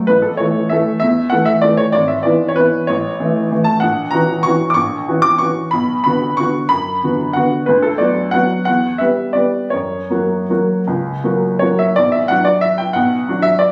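A classical piano waltz in 3/4, nostalgic and elegant, moving with a rubato feel at a tempo that drifts between 152 and 205 BPM, in a short excerpt cut from a longer piece. A solo upright piano, woody and slightly detuned with a short sustain, sits up front and spans G#1 to D6, opening on A and settling into B minor from 3.8 s through Em and F# before arriving back on Bm at 12.0 s. It was captured on a phone in the room, with light club reverb and compression lending a candid, intimate sound.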